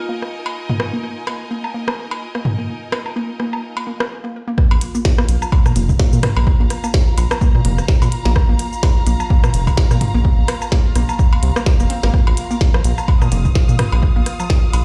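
Minimal techno at 127 BPM with a swung, quirky and hypnotic feel, opening on a Bbsus4 bed of distant, biting strings, a bubbling stepped-filter texture in the background and a hollow, detuned square-wave pluck riff over overdriven garage percussion of cowbell, rim click, toms and woodblock, while a filter sweep moves across the synth before a short break, then at 4.6 seconds the drop brings in a punchy, tape-warm kick up front, a round, deep analog bass with ring modulation and a muffled kit of clicky hats, cabasa and tiny snare, the pumping parts breathing against the kick in a bare stone room played through a big sound system.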